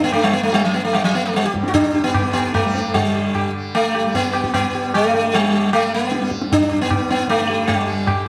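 Devotional and serene, this short excerpt of Hindustani classical music in raga hamsadhwani on G moves in a straight 3/4 at 151 BPM and gradually speeds up, with the music shifting into a new section at 3.0 seconds. An up-front, plectrum-plucked sitar carries the melody with a round, buzzing tone and shimmering sympathetic strings, while a softly plucked tanpura holds a bright drone beneath it. A low-tuned tabla with short ring and a vintage, band-limited character supplies the percussion, all set in the lush reverb of a recital hall.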